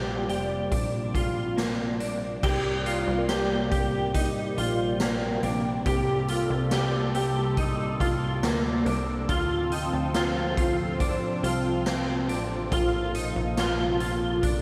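A dark, clean electric guitar sits up front, picking arpeggios through ensemble chorus, slapback echo and tape echo in this melancholic, ethereal dream pop excerpt at 70 BPM in straight 4/4. Beneath it, a swirling, detuned analog pad holds sustained chords through phaser and chorus, and a punchy, wave-folded analog bass plucks the low end. A faint FM bell adds mellow texture until 8.8 s, while a gritty, saturated garage kit with crash, hi-hat, kick, snare and tambourine joins at 0.3 s, as the harmony moves from Bb69 to Cm9, Dm7 and Bbmaj7(no3) inside a lush 2.5-second hall reverb with a big arena sound.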